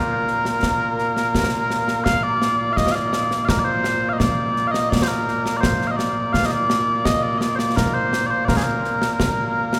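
Set in a lush church acoustic, this stirring, ceremonial excerpt of Scottish traditional pipe music in Bb major moves at 84 BPM in a straight 3/4, with mellow small bagpipes carrying a sweet, continuous, vibrato-laden solo melody up front from the opening moment while a close, dry concert snare and bass drum, touched with bright cymbals, join at 0.3 seconds.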